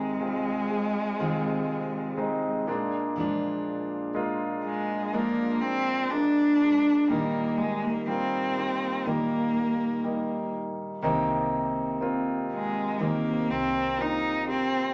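A short, wet club reverb gives this hopeful, tender pop ballad an intimate room sound, in a fragment cut from a longer piece. It moves at a slow 61 BPM in 4/4 with a straight feel, in Ab major, drifting through Ab/C, Bb7, Eb/Bb and Cm7. Up front, a single bowed cello carries the melody with vibrato and a nasal, boxy, focused tone. Beside it, a concert grand piano supplies polished, long-sustaining accompaniment with deep bass and audible action noise. A picked jumbo steel-string acoustic guitar plays full-bodied arpeggios on fresh strings, with the odd finger squeak. At 11.0 s a foam-muted, vintage fingered electric bass slips in low in the background, round, dark and punchy.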